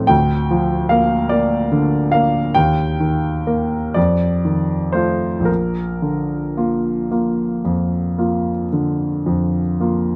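Nostalgic and dreamy, this brief fragment of a romantic classical nocturne unfolds for solo grand piano over about 10.2 seconds. The pace is slow and flexible, moving at roughly 36-50 beats per minute counted in dotted quarters within a 12/8 metre, and the rubato lets each phrase breathe freely. The piano has a warm, smooth, vintage tone and sits up front in the sound, reaching from deep Bb1 up to G5. Its harmony drifts from Bb over D through Eb and F7 before settling on Bb at 5.5 seconds. Close, detailed microphones capture the instrument intimately, while light reverb adds a soft halo that deepens the reflective, wistful atmosphere.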